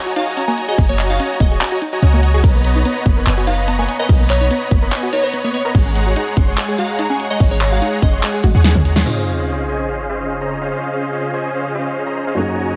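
A half-time pulse at 145 BPM in 4/4 drives this bright, playful future bass passage in Db major, cut from a longer piece. It opens mid-drop: huge, detuned supersaw chords carry the riff with sidechain pumping, a low-pass filter and delay, joined within the first second by a punchy, layered electronic kick and a pop kit with a fat snare, handclaps, hi-hat, crash and toms in studio reverb. A deep, boomy 808-style bass sits up front, while a glassy wavetable pluck sings the melody and a soft, round pluck adds chorused arpeggios beneath it, both pumping with the sidechain. The harmony moves through Gb69, Cbmaj7 and Ab7sus4 before a drum fill leads to an electronic sub drop impact at 9.1 seconds, landing on Dbmaj7. There a muted, intimate felt upright piano takes over the accompaniment, and an ethereal, airy pad with tremolo and ensemble chorus enters quietly in the background at 10.2 seconds. 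The whole passage sits in light reverb and digital ambience.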